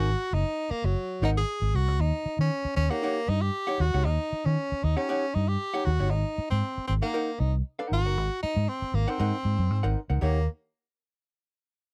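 A straight 4/4 funk groove at 117 BPM struts along in this short, gritty excerpt cut from a longer piece, moving between Ab9 and Eb7#9 chords. A vintage muted electric bass, played with the fingers, sits up front with a round, punchy, foam-muted tone, dark and amped, reaching from Gb1 to Eb3 and sounding the loudest of the three parts. A hollow-body jazz guitar plays clean, picked, compressed accompaniment in a dark electric voice between Eb4 and Gb5. Over them, a bright tenor saxophone carries the solo melody from Gb3 to Ab4 in a jazz style, with vibrato, a soft attack and scooped notes, sitting present and up front. The sound is dry and close, like a 1970s studio session with little reverb, and all three instruments play from the start to around 10.5 seconds.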